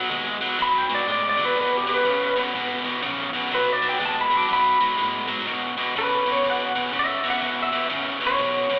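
Electric blues shuffle at 123 BPM in E major with a soulful, rollicking swing, where a biting overdriven guitar riff and a twangy, slightly broken-up lead guitar through a small old amp share the front with slapback echo, a dark, round, foam-muted bass sits in the background, a clean guitar solo arrives at 5.5 seconds over an E chord, and the whole cut from a longer piece sounds like a live gig heard through a venue's PA with plate reverb in a recital hall and a telephone-like tone.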